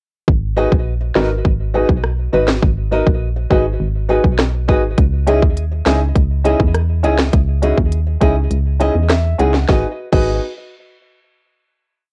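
A straight four-beat dancehall groove drives this short, tough and hypnotic piece, with an electronic drum kit placing a syncopated kick answered by a sharp snare, crisp hi-hats, rim clicks and a crash cymbal up front. Beneath it, a punchy, round FM bass plays dark, syncopated low lines with slides, each note striking fast and decaying. A grand piano with short sustain adds off-beat chords in close voicing, and a fingerpicked nylon-string guitar contributes off-beat chops and arpeggios with audible finger squeaks; both carry a cassette tape colour, and the guitar also trails a tape echo. The harmony moves from a minor seventh chord to a second chord with an added ninth, then returns to the first. At 8.5 seconds the kick drops out while the piano plays a fill, leading to a final chord at 9.7 seconds, all heard in a light reverb with the character of a home recording on cassette.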